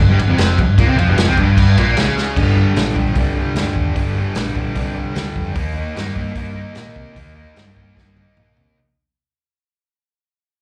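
A straight 150 BPM pulse in 4/4 drives this raw, swaggering garage rock excerpt in G minor, with a crunchy breakbeat kit of tight kick, medium-tuned snare, hi-hat, toms and dark crash cymbals coming in at 0.2 seconds, gritty and saturated up front with a rolled-off top, and throwing in fills at 2.2 seconds and again from 8.0 seconds. A bright, double-tracked fuzz guitar riff sits just as far forward, compressed and distorted, over a round, overdriven hollow-body short-scale bass picked low and dark, moving from Gm to Eb at 5.6 seconds. Heard as a live club gig through the venue's PA with light reverb, the piece fades out from 2.4 seconds until it is cut off.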